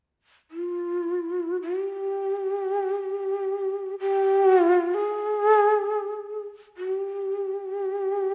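In free time, this brief, austere and calm fragment of Japanese traditional chamber music features a solo shakuhachi entering at 0.5 seconds, its breathy, end-blown bamboo tone heard up front with a soft, chiffy attack, vibrato, lifted highs and an unsteady character in a narrow range from F4 to Ab4, all set in a moderate scoring-stage reverb.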